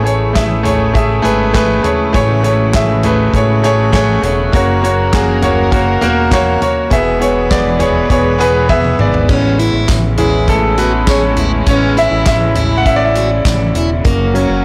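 At 101 BPM in a straight 4/4, this uplifting, anthemic piano-driven pop excerpt in A major sets a clear, up-front concert grand piano with deep bass against reedy, bowed studio strings in the background, a fat, detuned analog bass and a natural small-room country drum kit with a punchy kick, dark cymbals, handclaps and toms. After a drum fill, the grand piano takes a solo at 9.3 seconds as a picked, plugged-in steel-string acoustic guitar enters with a riff complete with finger squeak, joined briefly by a jingly tambourine at 9.9 seconds, over chords moving from Amaj7 through F# and E. The whole recording sits in light reverb and comes across blown-out and overdriven.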